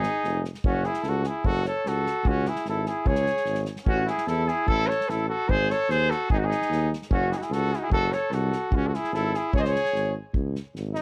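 Balkan brass band folk in C# harmonic minor, this fiery, virtuosic 11-second cut from a longer piece drives along at 148 BPM in a straight 2/4, cycling through G#5, F#m and C#5 with a turn to A5. A dark cornet with light vibrato carries the melody up front, sounding distant and roomy, while a clear, soft-attacked trumpet plays a second line until 10.1 seconds and a warm, present tuba anchors the bass. An airy acoustic drum kit played with bundle sticks adds a tight kick and a medium-tuned snare, all set in a dry, close 1970s-style studio sound.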